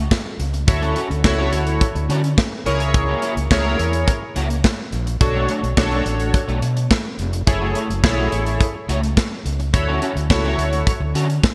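A straight 4/4 groove at 106 BPM drives this slick, late-night early-eighties boogie funk snippet in F# minor, where a modern studio drum kit with a tight kick and medium-tuned snare sits up front beside a punchy, overdriven fingered electric bass, a slightly broken-up electric guitar riff shimmers through ensemble chorus, and a glossy, detuned polysynth with filter sweeps and ring modulation sustains chords from Dmaj7 through Bm9 and F#m7, all bathed in a lush hall reverb and bright 1980s-style digital sheen.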